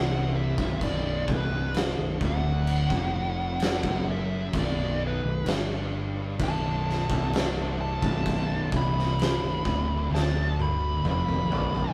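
A straight, slow 4/4 drives this sludgy, brooding stoner and doom metal excerpt, with the oversized low-tuned drum kit entering at 0.6 seconds, up front and gritty with a punchy kick and fat snare, and closing on a fill from 10.1 seconds. A compressed fuzz lead guitar with wah carries the solo melody over a low Bm riff stacked from a bright, double-tracked overdriven electric guitar and two thick fuzz guitars, one dark and very quiet, the other warm and set in the background, all anchored by a growling picked bass with overdrive and tube saturation. The sound is a rough rehearsal-room recording with light reverb.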